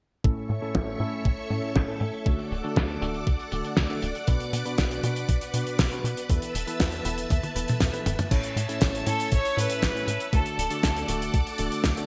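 A straight 4/4 italo disco groove at 119 BPM rides on a thumpy, tape-toned electronic kick and a damped 70s kit with a dry, fat snare and dark cymbals under gated reverb, with a drum fill from 7.3 to 8.3 seconds, while a tight, punchy sequencer bass with tube saturation drives from the background through a sunny A major progression of A, D, Bm and Esus4. A lush vintage string machine holds sustained chords with ensemble chorus, and a bright, clean tine electric piano plays stabs through a low-pass filter and digital delay, with filter sweeps on the piano and drums. At 9.1 seconds a rich, biting chamber violin section with light vibrato takes a brief melody, and the playful passage sits in a small room with a bright 1980s-style digital sheen.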